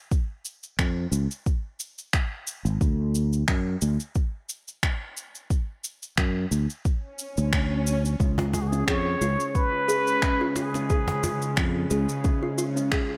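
A deep, up-front electronic kick and tape-warm electronic shaker and finger snaps set a hypnotic, earthy downtempo groove at 89 BPM with a light 16th-note swing, joined by a growly, bright fretless bass with analog chorus moving over C# and D. After an electronic swell at 7.1 seconds, the harmony shifts to C#7 at 8.2 seconds, where a woody, airy kalimba arpeggio with tape echo enters. A snappy small-room cajon and a breathy, plunger-muted jazz trumpet solo with delay follow moments later, and a tense, string-like drone with sidechain pumping arrives at 9.4 seconds. The whole excerpt floats in a dreamy, reverb-soaked mix.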